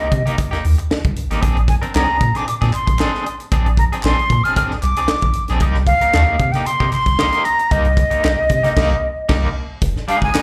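This live funk recording has the sound of a club gig heard through the venue's PA, with light club reverb around the band. It moves at a driving 114 BPM in a straight 4/4, a short cut from a longer piece that circles from Cm7 to Bb9 and back before landing on Fm7 at 9.8 seconds. A breathy silver concert flute carries the melody up front, its tongued notes shaded with vibrato and ranging from Eb5 to F6. Beneath it, a deep, round sub bass with a sine-like tone and fast attack holds the low end from F1 to C3, while an electric guitar at the edge of break-up adds twangy, picked accompaniment colored by tremolo and slapback echo. A tight, natural-sounding funk kit with a high-tuned snare, tight kick, hi-hat and crash cymbal drives the groove, and crisp, dry group handclaps join at 1.9 seconds. The whole band hits an accent together from 8.8 to 9.8 seconds.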